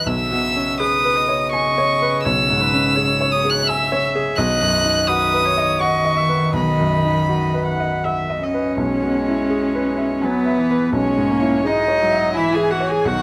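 A single violin carries the melody up front with an airy, sul tasto tone and light vibrato over a clear grand piano, a floating viola and a dark, intimate cello second line in this hopeful, tender neoclassical excerpt, which moves in a rubato 3/4 feel, is captured by close, detailed microphones with a touch of reverb, and turns to a new section at 8.8 s.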